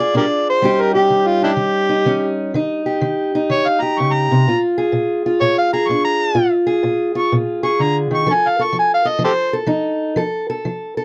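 An overdriven, amplified harmonica leads this gritty, soulful stretch of acoustic country blues, cut from a longer piece, and it sits up front with a jazz-inflected solo full of vibrato, tongue slaps and scooped notes. Its tone is gritty and distorted, carrying the melody from the opening until 9.5 seconds. Beneath it, a fingerpicked steel-string parlour guitar plays the accompaniment, also up front, with a dark, boxy character, and it continues until 11.0 seconds. The swung 4/4 groove moves through Bb7, Eb7 and back to Bb7 before reaching F7 at 8.3 seconds. A moderate booth ambience and a dusky, warm production keep the duo close and intimate.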